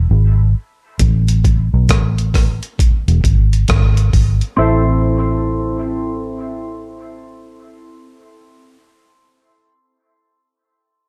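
Swung sixteenths give this meditative, heavy dub reggae cut its lilt: it opens on a break under a filter sweep, with a dark, round, foam-muted vintage bass up front, joined at 1 second by a gritty, compressed sampler-style breakbeat kit (thumpy kick, hi-hat and rim click), also up front, until the drums drop out at 4.6 seconds, when a clean, picked electric guitar treated with phaser, low-pass filter and dub echo arrives alongside deep, detuned sawtooth chord stabs with a filter pluck, chorus and echo sitting in the background of a digital ambience.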